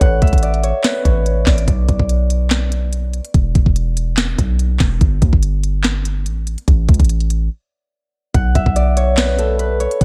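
Light reverb frames this hard-hitting, brooding trap excerpt, with a punchy, up-front low end cut from a longer hip hop piece. At 144 BPM in 4/4 with a half-time feel, it sits in B minor and is tuned slightly sharp to A4 = 441 Hz. The electronic trap kit carries a knocking kick, sharp snare, crisp hi-hats and handclaps, all roughened by vintage 12-bit sampler grit. Beneath it, a heavy 808-style bass with a sine body, a noise layer and a fast, decaying attack runs the full 10 seconds. A fingerpicked Celtic harp plays the melody in a ringing, acoustic voice, softened by a low-pass filter and trailed by tape echo. The harp drops out at 3.3 seconds and returns at 8.3 seconds over a B9sus4 chord, while a break from 1.7 to 8.3 seconds moves through E5 and G5 chords between chordless stretches.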